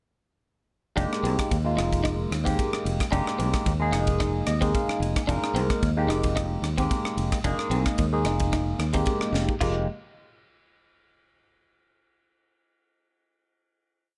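A crisp, punchy fusion drum kit with a high-tuned snare drives a slick, funky samba groove at 111 BPM in a lightly swung 4/4, under a growly fingered bass riff in F dorian, barky phased electric piano stabs in rootless voicings through a combo amp with a fill from 4.2 seconds, and a clean, compressed guitar ostinato bathed in lush chorus in the background, until a drum fill at 9.3 seconds leads into a final Fm11 chord ringing in a small room from 9.6 seconds.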